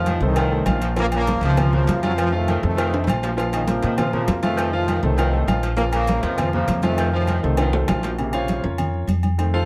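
A driving 200 BPM salsa pulse in 4/4 from woody, thumpy pizzicato upright bass up front, damped congas, a round low-tuned cowbell and ringing agogo bells and timbales, with drum fills near 2.9 and 7.6 seconds, carries a fiery Bb harmonic minor excerpt where a tight, brilliant trombone section with tape echo leads over a bright, polished concert grand piano alternating F7 and Bbmadd9 and a mellow, vintage saxophone section in the background, before the piano takes a solo from 8.2 seconds, all captured with close, detailed miking and light reverb.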